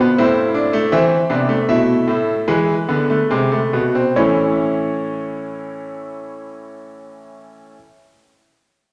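A bright, brilliant grand piano sits up front in a wet recital hall whose 1.7-second reverb lingers around every note, in this short excerpt from a baroque-style four-part fugue. The mood is driving yet solemn, moving in a straight 4/4 between 68 and 82 BPM, with the pace slowing over the first 4.2 seconds as the harmony passes from D minor through A minor to E7. At 4.2 seconds a new section opens on an A major chord, the solo piano ranging from A2 to F5 until it closes at 7.8 seconds.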